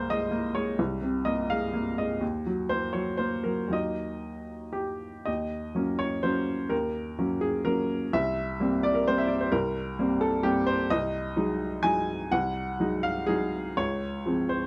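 Wistful and melancholic, this neoclassical minimalist piano fragment drifts in a rubato 3/4 between 109 and 133 BPM, centered on Eb dorian with the instrument tuned to A4 = 438 Hz. A solo upright piano carries the whole 14.7 seconds, its woody, vintage tone sitting up front and spanning C2 to Ab5. The harmony moves from Abadd9/C and Ebm into a second passage at 5.3 seconds that passes through Ebm7, C7 and Ab7/C before settling on Dbmaj7, all framed by light reverb and a dark production.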